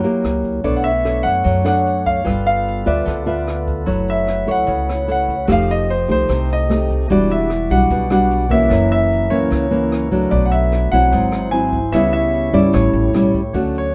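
A clear, up-front concert grand piano with long sustain carries the melody in this sophisticated, romantic bossa nova fragment in B minor at 149 BPM, over thumb-plucked classical nylon-string guitar placed just as close, a woody pizzicato upright bass, a small-room brush kit with boomy kick, hi-hat and rim click, and a soft chamber organ on flute stops with a touch of chiff that sustains chords in the background from 0.6 seconds, the whole set in a rough home-demo mix with light reverb.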